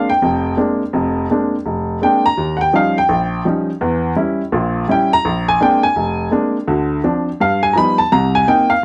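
An upright piano plays alone throughout this brief, swinging solo jazz fragment, its woody, intimate tone sitting up front with audible action noise and a light touch of reverb. Ranging from deep bass notes to bright upper register, it moves through rich harmony, from Bb9 and Eb9 through a diminished chord to Dm7, Gaug7 and Cm7. The mood is sophisticated and warm, with a natural, close sound, and the passage is cut from a longer piece.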